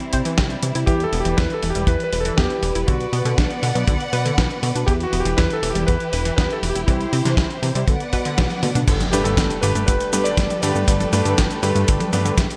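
This italo disco excerpt moves at 120 BPM in a straight 4/4, with a bittersweet yet danceable mood as the harmony moves from C through Em and Bm before opening onto Gadd9. A dry, tight acoustic kick anchors the beat, joined by a gritty, sampler-style kit with a fat snare, hi-hat, cabasa, toms and crash cymbal, bathed in gated reverb. A glossy, retro synth bass with chorus drives the low end, while a round analog pluck plays arpeggios in the background through chorus and delay. Lush, bowed symphonic strings hold sustained chords with vibrato and a soft attack, and a vintage electric grand piano with a clangy low end carries the melody through delay. A drum fill and band accent at 8.4 seconds lead into a new section, where an electronic impact arrives in the background at 8.9 seconds and a brilliant grand piano adds short stabs from 9.1 seconds, all within a light, small-room ambience.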